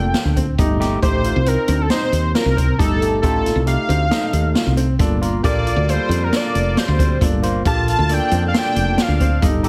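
Tense and brooding, this short cut from a longer progressive instrumental moves at 136 BPM in an uneven 5/4 metre with a straight feel, set in G minor. A thick, detuned unison lead with a sawtooth bite and vibrato carries the melody up front, bathed in plate reverb. Beneath it, a gritty, barky overdriven tine electric piano played through a combo amp supplies the accompaniment, while a clear baby grand piano spins arpeggios in the background. A woody, growly fretless electric bass sits prominently alongside an open jazz drum kit with a boomy kick and medium-tuned snare, the harmony moving from Gm7 to F7/G and back to Gm7 at 5.0 seconds. An edgy, forceful alto saxophone enters at 5.4 seconds as a second line, its punchy tone trailed by digital delay, and the whole mix carries a heavily compressed, radio-like sound with light reverb.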